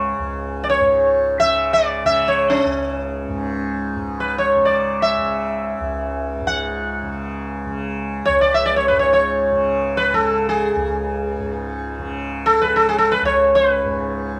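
A plectrum-plucked sitar carries the melody up front, its round, buzzing tone ringing with sympathetic strings as it moves between C#4 and F#5 in raga Bhairavi on C#. This is Hindustani classical music in free time, cut from a longer piece, with a longing, introspective mood. Beneath it, a softly plucked tanpura holds a shimmering drone from C#2 to C#3, sitting well below the sitar in level. Both instruments sound for the full 14.4 seconds, with the melodic material returning to its opening idea at 3.9 seconds. The tuning sits slightly below standard pitch, and a moderate studio reverb places the listener further back in the room, lending the performance a reflective air.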